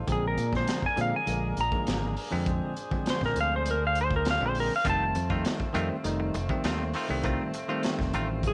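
Bell-like tine electric piano, a distant, roomy horn section holding sustained chords and fingered electric bass open this rollicking, swaggering straight-eighth soul blues at 100 BPM, joined at once by a gritty breakbeat drum kit with a high-tuned snare and punchy kick beneath a twangy, up-front lap steel slide solo over Bb7, while a scooped, compressed clean electric guitar adds stabs from 4.9 s as the harmony moves to F7, set in light studio reverb.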